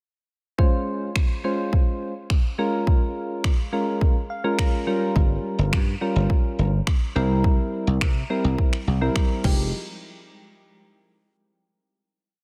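Dance-pop at 105 BPM with a bittersweet, driving mood opens on soft, round electric-piano-like synth keys playing syncopated chords through chorus and sidechain pumping, over a punchy, layered electronic drum kit with a four-on-the-floor kick, finger snaps and crash cymbal. After a synth keys fill at 4.0 seconds, a dry, bright thumbed slap bass enters at 5.2 seconds with a syncopated line and slides, also ducking to the sidechain, as the chords move from Dbmaj7 through Bbm7, Gm7b5 and C7 to Fm9. Light reverb adds a digital ambience before the piece closes on a final hit at 9.7 seconds.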